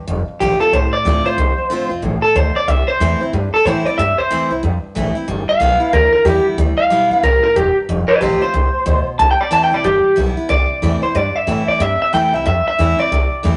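Rockabilly with a rowdy, upbeat swing, cut from a longer piece: a twangy, slightly broken-up electric guitar through a small old amp carries the melody up front over a thumpy, woody pizzicato upright bass and a bright, full-bodied picked steel-string acoustic guitar, all heard in a rough rehearsal-room recording with tube saturation and a moderate stone room reverb.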